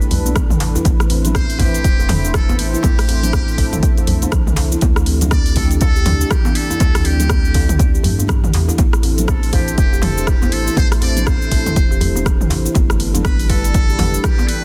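A dense, heavily limited modern mix with small room ambience opens this spiritual, earthy afro house cut in A minor at 121 BPM, swung on the sixteenths, where a punchy, layered electronic kick sits up front of a deep house kit of cabasa, hi-hat, rim click and toms with a softly clipped snare, while quiet congas and a tight, cracking djembe with metal rattles fill in from 0.1 seconds. A round sine sub bass and a dark, detuned sawtooth pad with chorus and 12-bit sampler grit both pump against the kick, joined by a woody, buzzing kalimba whose airy arpeggios pump and trail dub echo. Over the chords moving from G through Am7, Dsus4 and Am, a distant trumpet with a metal mute plays a brilliant, thin, jazz-style solo line with light vibrato and dub echo, in a section cut from a longer piece.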